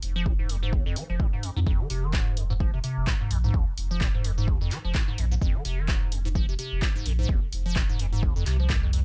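A deep, round sine sub bass pumping against the sidechain and an analog drum machine's handclaps and hi-hat, re-recorded in a small room, open this gritty, driving acid house excerpt with swung sixteenths, joined at 0.2 s by an up-front, squelchy, resonant square-wave acid riff with filter sweeps, phaser, analog chorus, cassette tape colour and its own sidechain pumping, and at 0.3 s by a punchy, overdriven electronic kick, all held on a single minor chord in a dry hardware recording cut from a longer piece.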